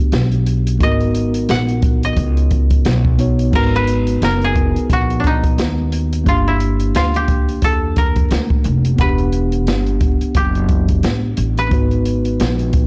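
Smoky and nocturnal, this jazz-hop cut from a longer hip hop piece moves at a relaxed 88 BPM with a swung sixteenth-note feel, as a mellow tine electric piano supplies clean chords over a thumpy, gut-string pizzicato upright bass with tube saturation and an up-front acoustic jazz kit of boomy kick, medium-tuned snare, hi-hat, crash and dark, rolled-off cymbals. A dry, fingerpicked koto with slapback echo enters at 0.8 seconds for a solo passage through 3.5 seconds, then carries the woody melody over a rootless Em9 moving to G#m9 and Gm7. The whole mix sits in studio reverb with a blown-out, overdriven grit and a bed of vinyl crackle.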